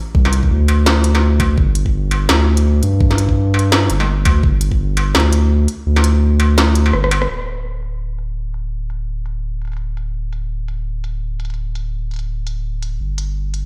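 Half-time drum and bass with a spacious, cinematic mood, this cut from a longer piece sets a deep, thick, saturated sub bass up front beneath a knocking electronic kick that plays until 4.8 seconds, while an industrial kit of smooth low-passed hats, rim clicks, struck metal and a clanging snare runs throughout, a drum fill and band accent lead into a second section at 7.3 seconds where a filter sweeps the drums, and the whole sounds as if played on a big sound system in a bare stone room.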